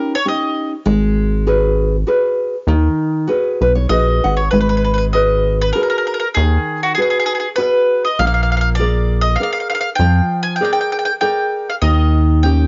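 Lo-fi home cassette sound with light reverb and a soft studio ambience frames this wistful, romantic Italian folk serenade excerpt in G# minor at 98 BPM in a lightly swung 3/4, where a classical nylon-string guitar fingerpicks cassette-tinged chords throughout and adds a fill at 3.3 seconds, a bright bowl-back mandolin with picked double strings sounds briefly at the start and returns with the melody at 3.9 seconds, and a rubbery, hollow, tube-saturated synth bass enters at 0.9 seconds, all three sitting up front.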